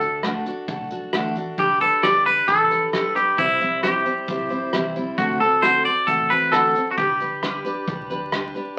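Heard through the crackle of a very old 78 rpm record and a wet studio reverb, this short excerpt from a longer piece is easygoing, nostalgic honky-tonk and classic country in a straight four. An up-front, twangy, clean electric guitar carries the melody over a bright, full-bodied picked steel-string acoustic guitar moving through D, G, C and D7 before landing on G at 7.0 seconds. A deep, mellow sine sub bass sits in the background, while a distant, roomy brush kit adds hi-hat, rim click and a punchy kick.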